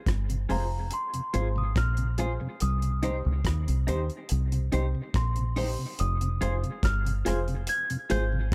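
Roots reggae with a serious, meditative mood, this short excerpt moves from F minor to C minor at 2.6 seconds and back to F minor at 6.0 seconds as a second section begins. A deep, foam-muted fingered electric bass sits up front with a round, punchy, amped tone, joined by a damped 70s drum kit of hi-hat, rim click and a dry, punchy kick. A mellow tonewheel organ stays in the background, its key click and slow rotary speaker colored by tube saturation and dub echo. Above it, a celesta carries the melody with a bell-like, delicate sweetness, trailed by dub echo. A clean, picked electric guitar with subtle chorus and echo shares its register with a woody, dark upright piano playing stabs. The mix is dry of reverb but heavy with echo, giving the groove a meditative pull.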